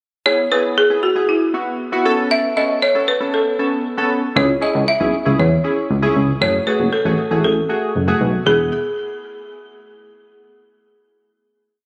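Euphoric, upbeat dance-pop at 117 BPM in E major, where a woody, rustic folk marimba played with hard mallets carries a motif-based melody through tape echo over round, detuned analog keys with chorus playing syncopated, closely voiced chords, and then a glossy synth bass enters at 4.4 s with a syncopated line, everything set in a moderate plate reverb and captured on a phone in the room before a final E chord arrives at 8.5 s.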